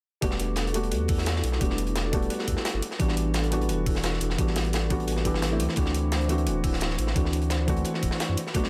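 A felt-muted upright piano sits up front in this soulful, rolling excerpt of liquid drum and bass, its soft, mellow tone made intimate by audible action noise and shaded by a low-pass filter and tape echo. Beneath it, a round sine sub bass with a fast attack holds sustained, deep notes close to the listener, while a metallic vibraphone played with medium mallets rings out arpeggios in the background, its fast motor vibrato trailed by delay. The beat layers a dark, smooth, saturated and gritty breakbeat kit from a small room, with a medium-tuned snare and a rolled-off top, over an overdriven, knocking electronic kick and bright, overdriven electronic hats. The whole band comes in together at 0.2 seconds and moves through Em11, A13sus4 and D9 in a straight 4/4. Light reverb and studio ambience surround the mix.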